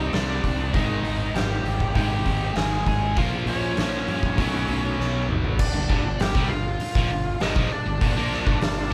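Cathartic and brooding, this quiet-loud alternative rock piece moves at 99 BPM in a straight 4/4, with a biting, overdriven lead guitar carrying the melody over a double-tracked, distorted riff guitar and a growly, fuzz-laden fingered bass. A twangy, clean twelve-string electric guitar adds bright picked arpeggios in the background until 5.6 seconds, when the music moves into a new section after a drum fill from 5.0 seconds. The oversized, low-tuned acoustic kit sits up front with a punchy kick, a dark, gritty saturation and crashing cymbals and toms, and the band sounds as if playing live in one room with light reverb.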